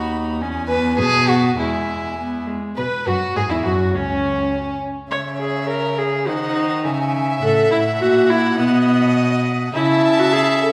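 All four bowed gut-string players of a string quartet sound together from the opening in this graceful, cheerful classical-period movement, its quick duple stride carried by a first violin melody with a smooth top over a second violin line. The reedy period-style viola sits up front with its accompaniment, while the rich cello anchors the bass and the harmony moves from bright major chords into minor and diminished colours before settling back. The quartet rings in the long, wet reverb of a recital hall, and the excerpt is cut from a longer piece.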